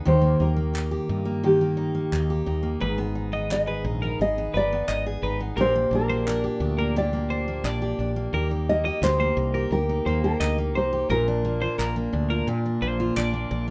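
A thumb-plucked nylon-string guitar carries the melody over a dark, jumbo-bodied picked steel-string acoustic guitar from the very start of this heartfelt, carefree acoustic pop excerpt in Eb major at 87 BPM, with a round, hollow-body woody fretless electric bass sitting up front beneath them. Crisp, saturated group handclaps join at 0.8 seconds, and a bright, twangy twelve-string electric guitar adds clean arpeggios from 2.8 seconds, as the chords move through Eb, Abm and Bb6 before returning to Eb and Bb. The nylon-string melody stops at 12.1 seconds, and the remaining parts carry on in a light reverb.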